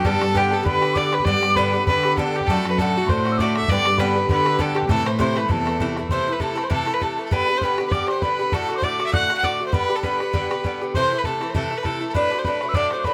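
Set in a moderate studio ambience, this spirited, dark and lively Celtic reel, cut from a longer piece, moves with a swung eighth-note feel over a chord progression built on G, D, and Am. Up front, a rich, intense bowed fiddle with light vibrato and plate reverb carries the melody over bright, metallic picked bouzouki on double strings, while a damped, tight bodhran keeps the pulse and a mellow, hollow wooden whistle with an airy, soft attack plays a second line in the background. A dark, woody cello played sul tasto holds the bass from 0.1 to 6.0 seconds, falling away as the second section begins.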